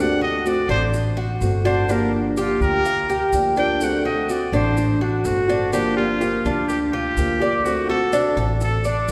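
A cavernous church reverb bathes this nostalgic, danceable Cuban son and guajira cut in G minor at 125 BPM, where a nasal, straight-muted trumpet sings a vibrato-laden, scooping jazz solo until 5.7 seconds over metallic, up-front double-strung tres arpeggios, a small, dark fingerpicked nylon-string guitar, a growly, woody pizzicato upright bass and grainy maracas entering in the background at 0.5 seconds, all circling D7 and Gm7.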